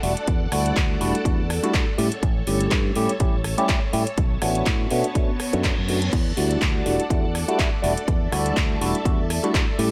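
Filtered disco house with a funky, groovy feel, this short excerpt cut from a longer piece rides a swung sixteenth-note shuffle in 4/4. A bright, clean tine electric piano carries the accompaniment through a phaser and a low-pass filter, while a lush string machine ensemble holds sustained chords beneath it, its vintage sawtooth tone thickened by ensemble chorus, a sub octave and a soft attack. A round, dark fingered electric bass anchors the low end, and like the keys and strings it pumps against the sidechain and sits under a low-pass filter. A house kit of handclaps, rim clicks, metallic hi-hats and crash cymbal plays from the start, with the hats and cymbals pumping in time, and a punchy, tape-warm electronic kick drum enters up front at 0.3 seconds. The harmony moves from Em11 through A7 and Bm9 before returning to Em11, and a reverse cymbal sounds in the background around 5.3 seconds, all set in a light reverb.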